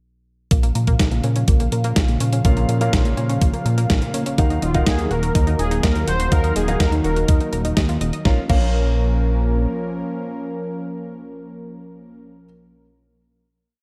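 A faint mains hum sits beneath a digital ambience in this bittersweet and nostalgic italo disco piece. An overdriven, thumpy electronic kick drives a four-on-the-floor pulse, joined by a sampler-style drum machine with closed hi-hat, a medium-tuned snare and crash; both drum parts sound as if re-recorded in a large room. Up front, a glossy, chorused synth bass jumps between octaves, while a smooth analog pad holds sustained chords and a bright pluck repeats an eight-step arpeggio with chorus and tape echo in the background. From 2.4 s a concert grand piano with deep bass adds held chords with syncopated pushes, and at 4.6 s a fat, warbling synth brass plays a short hook with vibrato. The harmony moves from Bbm to Ebmadd9 and back, and after the beat drops away, the pad and piano sustain a final Bbm chord until 12.4 s.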